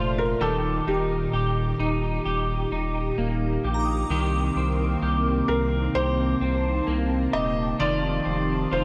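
Dream pop at 65 BPM in C dorian, haunting and hazy, this short cut from a longer piece sets a felt-muted upright piano melody with shimmer reverb and tape echo over a hollow, flute-like pad with chorus, slightly broken-up electric guitar arpeggios under ensemble chorus, a deep saturated sub bass held up front, and a bright FM bell that sparkles only until 4.6 s, all moving through Eb, Cm7 and F7 in a moderate plate reverb.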